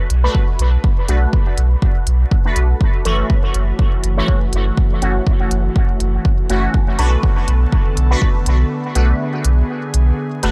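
Dry, gritty hardware sound with vinyl crackle frames this hypnotic, cavernous cut from a longer dub techno piece, where a round, pumping sine sub bass sits up front beside a punchy analog kick and smooth layered hi-hats, while juicy, resonant sawtooth polysynth stabs with filter sweeps, phaser, chorus and dub echo drift over a swung groove, an airy, breathy pad with slow attack enters at 3.3 seconds on F#m7 before moving to Bm7, and the kick stops at 8.3 seconds.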